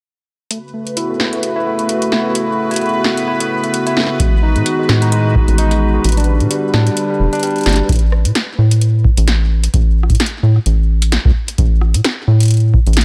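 This IDM piece is playful and glitchy, with a lightly swung groove that opens at 0.5 seconds on an electro analog drum machine of punchy snare, rim click and metallic hats, fed through a digital delay. An overdriven tine electric piano plays gritty, barky arpeggios up front, filtered and echoed, over a hollow, flute-like pad of soft sustained chords with a gentle chorus. A bright, bubbling texture with random filter steps sits low in the mix, pumping against the beat and washed in its own reverb. At 4.2 seconds a rubbery, bouncy square bass and a deep, dry electronic kick arrive, the bass resonant and dark with a plucky decay and the loudest part of the track. At 7.9 seconds the pad, piano and texture fall away, leaving the bass and drums to carry the second section in a light reverb until this excerpt of a longer piece cuts off.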